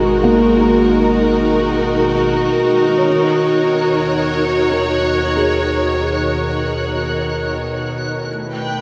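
Weightless and peaceful, this short ambient passage in free time is cut from a longer piece and rests on a close, up-front studio string section holding soft-edged, sul tasto chords with light vibrato, moving from G#m7 to D#m7 and touching B7b13/A near the end. Behind it, a felt-muted upright piano with thick felt and audible action noise spins mellow arpeggios through a diffuse ambient delay until 8.5 seconds. Beneath, a deep, ominous rumbling drone and a tense, nasal, bowed-like drone sustain, while a twinkling, sparkling granular texture fades in high above, all within a wet scoring-stage reverb.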